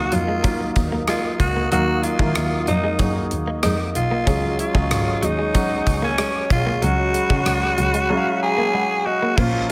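A light reverb gives this short cut from a longer 1980s-style pop piece a polished, airy sheen, with a romantic, uplifting mood at a steady 94 BPM in a straight 4/4. A growling tenor saxophone carries the melody up front, its raspy, gritty tone marked by scooped notes and vibrato, sounding both punchy and roomy. A gated 80s drum kit sits just as close, its tight kick, hi-hat, rim click and bright crash cymbals ringing in a stone-room space. A warm baby grand piano supplies present accompaniment and a fill at 8.1 seconds, while a bowed double bass with a smooth top and vibrato anchors the low end. In the background, a clean, compressed electric guitar picks a bright riff through lush chorus, and a detuned sawtooth pad sustains resonant chords with a slow attack, filter swells and a long release. The harmony moves from D#madd9 to C#sus4 at 4.3 seconds.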